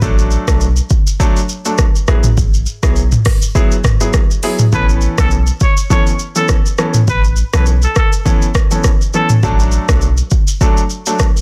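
The sound is dense and heavily limited, with little reverb, giving this short afrobeats excerpt a close, modern feel. At 102 BPM in A major, with a gentle 16th-note swing, the mood is romantic and sunny. Up front, an electronic, overdriven afro-pop drum kit carries a deep kick, metallic hi-hats, rim clicks, shaker and toms, and sounds re-recorded in a small room. Beneath it, a clean 808-style bass adds boomy, sine-like low notes with a fast attack and dark decay. A clear, intimate grand piano plays chords from D/A to Eadd9/A and then Aadd9, its short sustain and audible action noise giving it a polished presence. From 4.7 to 9.3 seconds, a vintage pop-style trumpet takes the melody as a solo, with light vibrato, scooped notes and a touch of tape echo.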